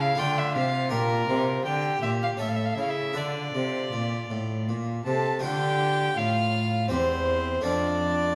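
In a straight 3/4 at 81 BPM, this grave, flowing baroque-style sonata movement in D minor is a short cut from a longer piece, with all four players sounding from the start to 8.3 seconds. The first violin carries the melody with a gut-string tone and light vibrato in period style. A second violin, rich and up front, plays a second line in a slightly lower range. A bowed cello holds the bass with a reedy edge, also close to the ear, while a full, plucked harpsichord of the Flemish type, with two sets of strings, fills in the continuo. The harmony moves from Dm through Gm/Bb and A back to Dm, then turns toward C/E and F near the end. A moderate recital hall reverb gives the ensemble a sense of space.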